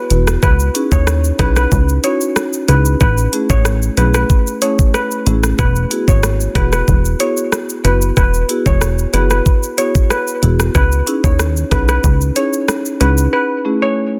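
A bright, shimmering steel pan opens this sunny, summery dancehall excerpt, carrying the melody between B4 and C#5 with a digital delay trailing its metallic notes. Almost at once a woody marimba played with medium mallets joins in accompaniment, its rosewood tone sounding vintage and band-limited, while a punchy, funky analog bass with a fast-attack filter pluck sits up front in the low register. An electronic afro-pop drum kit drives a straight 4/4 groove at 93 BPM, pairing a knocking kick with warm hats, rim clicks and shaker, and soft clipping gives the snare some grit. The harmony in E major moves through C#madd9, Amaj7 and Eadd9 before circling back. The mix is dense and heavily limited with a digital ambience, and the bass and drums drop out at 13.3 seconds, leaving the marimba to sound until 13.8 seconds and the pan to ring out until 13.9 seconds.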